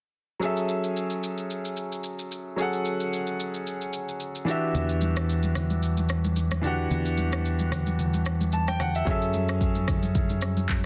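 A dense, heavily limited modern master in a small room ambience frames this late-night, deep amapiano excerpt in F# minor, moving at 111 BPM in 4/4 with a 55% swing on the sixteenths. From 0.4 seconds a clear, open concert grand piano with a deep bass sits up front as accompaniment, playing over F#m9 before the harmony shifts to Em9, while an electronic, produced afro-pop drum kit supplies handclaps, a deep kick, rim clicks and shaker, with soft clipping on the snare. At 4.7 seconds a fingered electric bass joins with a direct, amped, punchy tone, holding to the low range around E2 and F#2, alongside very quiet congas whose thick skins, medium tuning and soft hands give a vintage, band-limited, acoustic color. The harmony returns to F#m9 at 9.1 seconds as the piece moves into a new section, before the cut ends.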